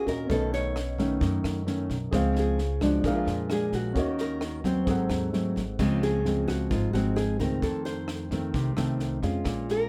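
A straight 4/4 bossa nova groove at 131 BPM in Db major sets a relaxed, sophisticated mood in this short cut from a longer piece. A compact cocktail drum kit keeps it dry, with a punchy kick, a high-tuned snare, rim clicks and dusky crash cymbals, while a woody pizzicato upright bass anchors the low end. Up front, a thumb-plucked nylon-string guitar carries the accompaniment in a shadowy classical tone, and a second, fingerpicked nylon-string guitar sings the melody with a soft glow of plate reverb. An intimate grand piano, its action noise audible and also touched by plate reverb, adds accompaniment until it drops out at 5.8 s as the opening phrase repeats. The harmony moves through jazzy colours such as Dbmaj7, Bb7, Ebm7 and Ab7b9, all framed by light room reverb in a rough home-demo mix.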